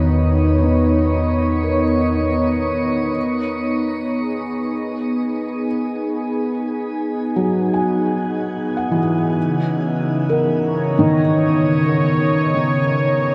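A felt-muted upright piano, soft and intimate, plays mellow arpeggios through a delay, sitting up front beside a detuned sawtooth analog pad that holds smooth sustained chords with lush chorus and a filter sweep over the first 3.2 seconds. This ambient piece in free time and E lydian feels serene and luminous. A deep, rumbling, warbling drone anchors the opening before stopping at 3.1 seconds, and the harmony moves from Emaj7 to C#m7 at 9.4 seconds, all bathed in a long shimmer reverb within a dark, warm production.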